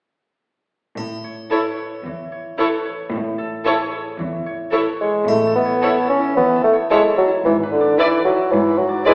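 An up-front solo bassoon with light vibrato enters at 5.0 seconds in this playful, magical film cue at 111 BPM in A major, joining ringing fingerpicked concert harp arpeggios, a lush cello section bass, a close triangle, an expressive violin section melody with portamento, a dark, smooth second violin line, a focused viola section accompaniment and a very quiet double bass section, set in a reverberant recital hall with an AM radio tint.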